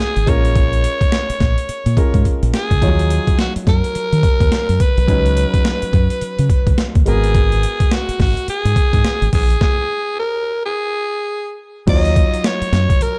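A raspy, forceful alto saxophone leads up front in this punchy, bouncy R&B and new jack swing cut in Eb minor at 106 BPM with a swung 16th feel, backed by a short-sustain concert grand piano, a deep, round fingered electric bass and a gritty, compressed sampler-style breakbeat kit with a thumpy kick, with a drum fill at 2.3 seconds and a stop from 9.6 to 11.9 seconds inside a dark, dry mix.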